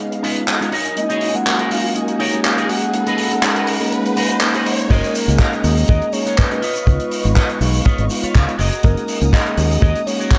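A lightly swung 4/4 groove at 122 BPM drives this sunny, feel-good nu-disco clip in F# major, with a damped 70s drum kit of handclaps, hi-hat, shaker and dark crash cymbal sounding dry and up front from the start while a riser sits in the background through the build-up. A bell-like tine electric piano with slapback echo and sidechain pumping carries the chords beside lush, woody bowed strings set back in the mix, while a twangy, scooped guitar riff through an envelope filter opens with a clean fill, and a soft, detuned octave-layered synth lead with chorus, phaser, tape echo and 12-bit grit carries the melody from 1.0 s. At the drop at 4.9 s a tight kick with studio reverb and a round, direct fingered bass arrive prominently in the mix, grounding the groove over rich extended chords.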